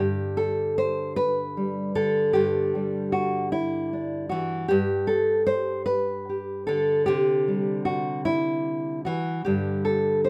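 A lone nylon-string guitar opens this pastoral, hopeful folk excerpt, its warm, thumb-plucked, classical tone sitting up front with fresh strings across a range from G2 to C5. The solo fingerstyle playing moves freely in a rubato 6/8 at around 50 BPM, drifting through G5, Em7/G, G, Cadd9 and Gsus2 over about 10.3 seconds. A moderate studio reverb gives the guitar a gentle sense of space in this short passage cut from a longer piece.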